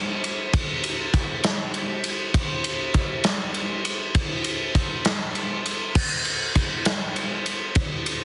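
A big acoustic rock drum kit enters at 0.2 s and carries this brooding, cathartic 6/8 fragment at 66 BPM with a straight feel, its punchy kick, medium-tuned snare, ride and crash cymbals sounding mid-forward, up front and rolled-off at the top in a big room, all squeezed into a heavily compressed, radio-like sound with little reverb until the cut at 8.2 s.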